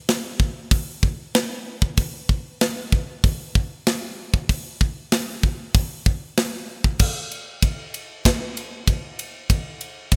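Heavy and dark, this fragment of a metal piece in straight 4/4 is carried by a tight acoustic drum kit alone, entering at 0.1 s with kick, snare, hi-hat, ride and crash cymbals. The kit sits up front with a polished, airy studio-room sound, bright cymbals, a medium-tuned snare and a tight kick, all under light reverb in a rough home demo mix. At 7.0 s the groove drops into half time for a new section that runs to the end.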